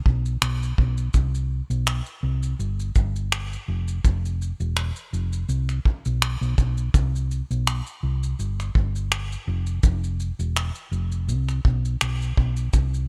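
Acoustic pop with an easy-going, sunny mood and a light swing in its 4/4 groove, heard in this short excerpt. A dark, round, hollow-body electric bass, fingered between E1 and C2, sits up front alongside a cloth-damped, thuddy drum kit of finger snaps, a tight kick and shaker, recorded in a small room with a rolled-off top. Both parts play from 0.1 to 13.1 seconds in a dry, bright production with a 1980s digital sheen.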